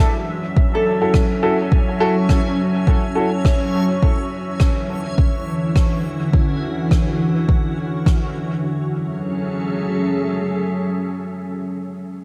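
A soft, tape-warm electronic kick sits up front at 104 BPM in 4/4, its 16ths carrying a light swing. An acoustic rim click with a natural hall quality sits low in the mix, trailed by dub echo. This is deep, spacious ambient dub in F# minor, cut from a longer piece, moving from F#m7 to Dmaj9 and back. An organ-like additive pad holds sustained chords up front: pure, calm and full-bodied, detuned with a sub octave, slow attack and long release, and thickened by ensemble chorus and its own reverb. A mellow, fingerpicked Celtic harp rings out arpeggios in the background with dub echo until 3.1 s, while a warm, woody upright piano drops echoing stabs, and a reversed, granular swelling texture adds a bright, dreamy shimmer. The kick and rim click stop at 8.2 s and the pad carries on to 11.7 s, the mix sitting in a moderate echo chamber reverb with small room ambience.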